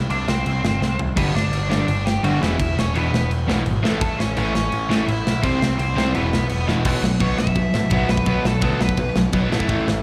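Heard as a live gig through the venue's PA with recital hall reverb, this rowdy, upbeat punk rock excerpt charges along at 169 BPM in a straight 4/4, driven by a growling, punchy overdriven bass and a tight metal drum kit with bright cymbals, a medium-tuned snare and a firm kick, both sitting up front. A dark, nasal lead guitar with a parked wah carries the melody, and at 1.2 seconds two riffing guitars join with slapback echo: a bright distorted electric set in the background and a warm, overdriven semi-hollow guitar. From 6.9 seconds the piece moves into a new section where the lead guitar takes a solo until it drops out at 9.2 seconds.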